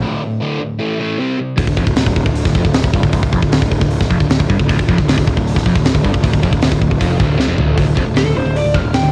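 A dry, cassette-worn home recording of heavy, driving hard rock at 155 BPM in D minor opens with a break where a phased, overdriven semi-hollow guitar, a bright, tight distorted guitar and a punchy, up-front fuzz bass play the riff, then a tight metal drum kit with a high-tuned snare and a very quiet, warbling detuned unison pad join at 1.6 seconds, and after a drum fill a dark lead guitar through a small cranked amp takes a solo from 8.2 seconds.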